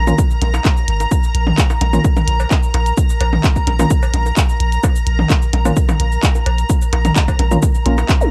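A punchy electronic kick drum sits up front in this sparse, cool minimal techno excerpt at 129 BPM in Bb minor, joined by a deep sine sub bass with a pitch-drop attack that pumps against it, while clicky, tape-softened hats, cabasa and handclaps tick alongside electronic toms, bongos and cowbell sent through dub echo. A hollow, wave-folded organ stab, dark and chorused with a cassette-tape color and dub echo, punctuates the groove between Bb3 and F4, and a blurred, evolving granular cloud pad drifts high on Bb5 with its own reverb and sidechain pumping. The dark production carries light reverb, and a brief electronic zap closes the passage at 8.2 seconds.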